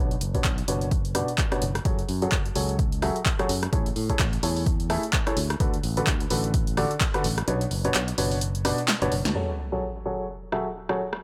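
Energetic, soulful piano house at 128 BPM in F# minor with a swung 16th feel, cut from a longer piece, built on a bright, worn baby grand piano riff over Bmadd9, F#madd9, Amaj7 and D6, shaped with sidechain pumping, low-pass filtering and digital delay, alongside a direct fingered electric bass that also pumps, a punchy, tape-toned analog drum machine of handclaps, hi-hat, rim click and snare in a short small room, and an electronic kick that stops at 7.1 seconds before a drum fill and band accent give way to an electronic sub drop at 9.4 seconds, set in light reverb.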